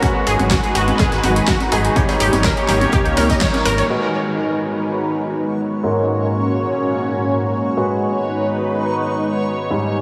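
Expansive and driving, this progressive house excerpt is built on a thick, detuned sawtooth pad that sits up front with chorus and phaser, holding sustained chords that pump with the sidechain throughout. Beneath it, a punchy, layered electronic kick leads the drums. A produced pop kit adds a fat snare and bright, pumping hats, a very quiet acoustic jazz kit brings a high-tuned snare, and faint, tape-toned electronic congas, toms and bongos fill in the percussion. A round, deep analog bass anchors the low end, while a ring-modulated unison pluck spins arpeggios through analog chorus and diffuse delay, and a felt-muted upright piano with audible action noise adds mellow, filtered stabs in the background. The band hits an accent at 3.4 s, and the drums, bass and pluck drop out by 3.9 s, leaving the pad and piano to carry on. At 4.7 s a reversed, granular texture swells in high with its own reverb, and the whole mix is soaked in a long cathedral reverb for a dreamy, spacious feel.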